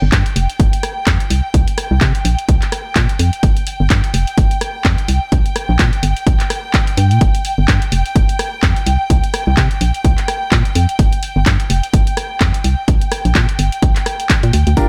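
A swung sixteenth-note groove at 127 BPM in 4/4 drives this soulful, bittersweet piano house excerpt, anchored by a punchy, up-front electronic kick with a tape-warm analog character from 0.1 s. Alongside it, an analog drum machine supplies handclaps, hi-hat and rim click, carrying the roomy sound of a re-recording in a large space. An organ-like FM bass, hollow and dark with a fast, percussive attack that then decays, sits prominently between F1 and C3 and pumps against the kick. Above it, a symphonic string ensemble holds bowed chords reaching G5, intense yet smooth on top with light vibrato, pumping in the same way as the harmony moves through Fsus2, C5, Gm and Bb5 with chordless gaps between them. Just at the close, at 14.8 s, a clear baby grand piano riff between D4 and Bb4 arrives with a very quiet, bright, dry tambourine, and the overall mix stays dry, with little reverb.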